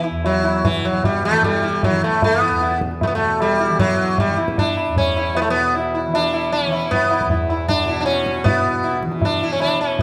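Hindustani classical fragment in E raga kafi, meditative and solemn, at 154 BPM in 4/4 and speeding up throughout, with an up-front, round sitar carrying the melody over buzzing sympathetic strings, a softly plucked tanpura drone shimmering beneath, and low-tuned, short-ringing tabla entering at 0.2 s, all set in a moderate recital-hall reverb with dark, warm production and tuning at A4 = 439 Hz.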